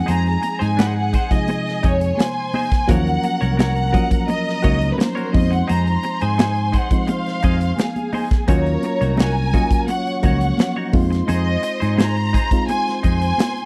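Cinematic and bittersweet, this lush 1970s-style soul excerpt sets a rich, distant violin section carrying the melody over a dark, woody string section playing sul tasto, a reedy, worn electric piano through its built-in speakers, a scooped semi-hollow guitar riff bathed in spring reverb, a punchy fingered bass, an up-front drum kit and high-tuned congas in the background, all moving between Fm7 and Ebm7 in a dry, close studio sound.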